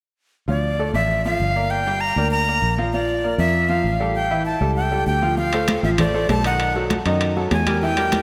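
A straight salsa groove in four sets the pulse for this fiery, danceable Latin passage, cut from a longer piece. A breathy metal jazz flute leads up front with a crisp, chiffy attack and a reedy straight tone, while a brilliant, worn upright piano, woody and slightly detuned, supplies the accompaniment. Beneath them a round, dark fingered electric bass, foam-muted and close, anchors the low end. As a second section begins, thin-skinned congas join in the background at 5.4 seconds, and vintage metal-shell timbales ring in at 5.5 seconds. A lush hall reverb soaks the mix in a dreamy wash.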